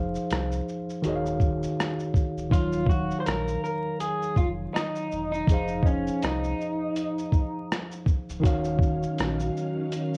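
A slightly broken-up electric guitar through a small old amp carries the melody from 2.5 to 7.7 s in this reflective, hazy lo-fi hip hop excerpt at 81 BPM in Eb dorian, its picked tone bathed in plate reverb over a worn, slightly out-of-tune tine electric piano with cassette tape coloring. Underneath, a deep sine sub bass with octave and a muffled, sampler-style drum kit with thumpy kick, rim click, hi-hat and shaker hold a swung groove through chords moving between Fm7, Ebm11 and Ebm9. Near the end, at 8.4 s, a warbling vintage organ-string ensemble enters with sustained chords, all set in a home-cassette sound with vinyl crackle and moderate room ambience.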